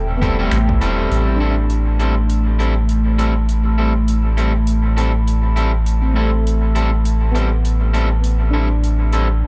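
Meditative and hazy, this ambient dub excerpt moves at 101 BPM in A minor with a swung sixteenth feel, built on a deep, round sub bass sitting up front beneath a warbling, nostalgic pad of detuned sustained chords treated with chorus, phaser and reverb. A ringing, airy handpan plays arpeggios in the background through dub echo and a low-pass filter that sweeps from 1.1 seconds, while a twangy, slightly broken-up electric guitar adds echoing stabs. A punchy electronic kick appears only from 0.2 to 0.8 seconds, and a soft-mallet kit of finger snaps, hi-hat and toms carries on in a big-room sound with dub echo, all set in a small room ambience.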